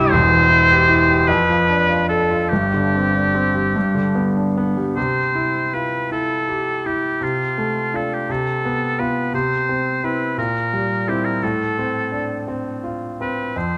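In a rubato 6/8, this serene, lyrical romantic classical excerpt sets a clear, vibrato-rich oboe singing the melody up front over a bright, brilliant grand piano with deep bass. The pair is heard close and detailed in a moderate concert-hall reverb as the harmony passes through a suspended dominant that resolves before a fresh phrase at 5.0 seconds, which drifts toward F/A.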